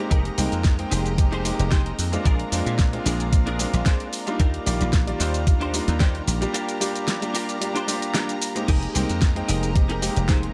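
A clear, vintage-toned concert grand piano opens this sunny, feel-good nu-disco passage at 112 BPM with a light 16th-note swing, joined at once by lush bowed strings sitting in the background and a bright, clean, direct-recorded electric guitar riff with ensemble chorus and slapback echo, while the piano carries slapback echo and sidechain pumping too. A punchy, foam-muted thumbed slap bass with its own pumping and a thumpy, up-front electronic kick arrive almost immediately, alongside a layered pop kit with a fat snare, warm hats, shaker and crash, all moving through Fm11, Bb7, Ebmaj7 and Gm7 before returning to Fm11. A break between 6.5 and 8.7 seconds interrupts the groove, and the whole piece has a dry, close sound, cut from a longer track.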